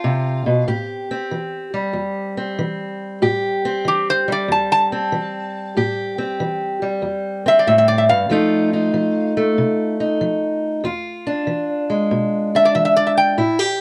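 A metallic, nasal metal-body resonator guitar, played with fingerpicks and a steel bar, carries a smoky, mournful slide melody through this 13.8-second excerpt of acoustic country blues in A minor at 94 BPM with a swung 4/4 feel, over a dark, boxy parlour steel-string acoustic guitar fingerpicking an accompaniment that moves through Am7, F7 and E7b9, with both guitars sitting up front in a close, detailed recording touched with light reverb.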